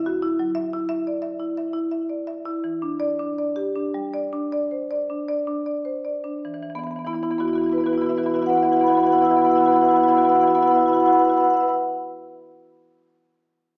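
The rhythm moves in 5/4 with a rubato feel, the pulse drifting between 75 and 91 BPM and slowing down through the first 6.4 seconds. This brief excerpt from a longer contemporary classical piece features a solo marimba played with medium hard mallets, ranging from D3 to E6 and placed up front. Its padauk bars give a woody, bright and percussive tone with an airy quality. The harmony moves from Dadd9 to Em7 in the opening passage, then settles on Esus2 when a new section begins at 6.4 seconds, creating a hypnotic, flowing mood that carries through to 11.8 seconds. A wet recital hall reverb with a 1.7 second decay surrounds the instrument, while the overall sound has the character of a small speaker.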